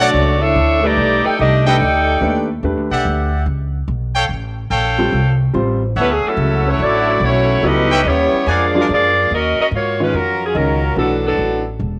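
This big band swing excerpt opens with the full horn front at once: a clear saxophone section carrying the melody, a trombone section voicing a second line in the background, and a bright, punchy trumpet section firing tight stabs over a woody, thumpy upright bass played pizzicato on gut strings. At a brisk 144 BPM in 4/4 with a strong swing feel, the mood is dramatic and brassy, moving through lush altered harmony from Dmaj7 and B7alt toward Em9 and A7alt. A vintage, smooth grand piano joins at 0.8 seconds with accompaniment, and the saxophones and trombones drop out briefly before returning together at 6.0 seconds, both sections shaded with light vibrato. The trumpets finish their stabs by 8.7 seconds, and from 9.3 seconds the harmony shifts to Ebm11 and then Bm7 as the saxophone melody carries on over piano and the dark, up-front bass, which plays through to the end at 12.0 seconds. 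Light reverb and studio ambience give the saxophones a slightly roomy, distant sheen even as they sit forward in the mix.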